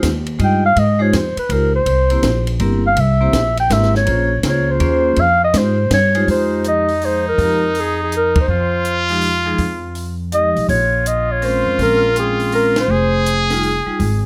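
Moody, cool small-group swing and bop jazz in F minor, moving at a brisk 163 BPM in a swung 3/4, with a dark, subtoned clarinet carrying the melody up front with light vibrato and scooped notes. A metallic, ringing vibraphone played with the motor off supplies the chords over a woody, growly pizzicato upright bass and a dry cocktail drum kit with dark cymbals, a high-tuned snare and a punchy kick. At 6.3 seconds a brilliant, forceful trumpet adds a second line, and the band hits accents at 8.3 and 12.7 seconds, all captured with close, detailed microphones and light reverb.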